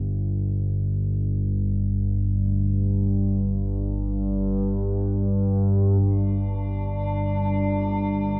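Unmetered and drifting, this unsettling, desolate dark ambient drone piece rests on an up-front analog drone, resonant and evolving with pulse-width shading and chorus, which moves through a filter sweep across its opening. Barely audible bronze gamelan-type gongs with an airy, beating ring appear from 2.3 seconds, a very quiet, detuned dark pad holds sustained chords from 6.0 seconds, and at 6.4 seconds an eerie, nasal, inharmonic FM drone with chorus and its own reverb joins. The recording sits in a huge ambient reverb with worn cassette-tape warble, and it is cut from a longer piece.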